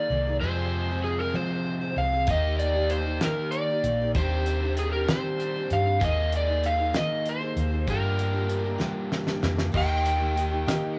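Wistful and dusty, this short cut from a longer folk rock and heartland rock piece moves in a slow, straight 6/8 with the hazy feel of a home recording on cassette in a small room, touched with light reverb. An overdriven slide guitar carries the melody up front, its tone thickened by cassette tape grain and an analog delay, and it takes a solo from 9.8 seconds. Beneath it, a bright, picked steel-string acoustic guitar picks out accompaniment while a double-tracked, compressed overdriven electric guitar plays a riff, and a dark, round, foam-muted electric bass sits punchy and close. A damped 70s drum kit enters at 2.3 seconds with a fat snare, tight kick, hi-hat and crash, dry and forward, and plays a fill before the change. The chords drift from Fm through Eb, Cmadd9/Eb, Absus2/Eb and Gm7 back to Eb, where a clear, intimate grand piano joins in the background, its action noise audible.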